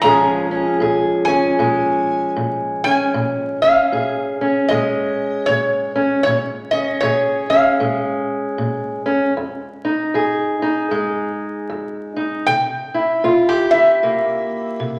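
A wet, roomy reverb with a decay of about 1.3 seconds surrounds this brief excerpt, with vinyl crackle running beneath it. It is brooding, mournful acoustic country blues at 77 BPM in 4/4, with a swung eighth-note feel. A metal-body resonator slide guitar carries the melody up front, its tone metallic and nasal, played with fingerpicks and a slide in a high register. Beside it, a fingerpicked steel-string parlour guitar supplies the accompaniment, dark, woody and boxy with the dull edge of old strings. Both guitars play throughout the 15 seconds, moving from Bbm7 to Fm7 at 9.4 seconds and landing on C7 at 12.5 seconds.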